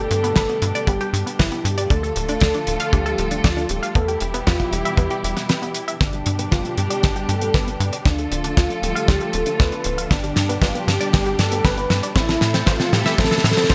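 A thick, detuned unison lead carries the delay-tinged melody in this nostalgic, melodramatic italo disco passage at 117 BPM, over veiled con sordino strings holding sustained chords, a round analog pluck with chorus and delay cycling arpeggios in the background, a punchy sawtooth sequencer bass, and a dry, up-front 70s drum kit with a fat snare, hi-hat and a tight kick, all in a bright 1980s-style digital production with plate reverb, where from 6.0 s a drum fill and a filter sweep on the arpeggio join the mix.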